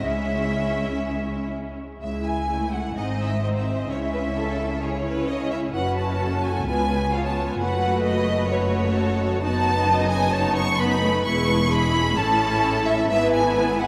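A rich, up-front violin section carries a high second line over the melody of a second violin section with a smooth top, in this spirited, lively fragment of a quick classical-period movement for string orchestra, played with a flexible rubato feel. Beneath them, lush violas fill out the accompaniment while a cello section sits in the background and woody double basses anchor the bass, all bowed with vibrato. The whole ensemble rings out in a vast, echoing cathedral-like space, with the harmony moving through a chain of chord changes from the opening at 0.0 s to the close at 13.9 s.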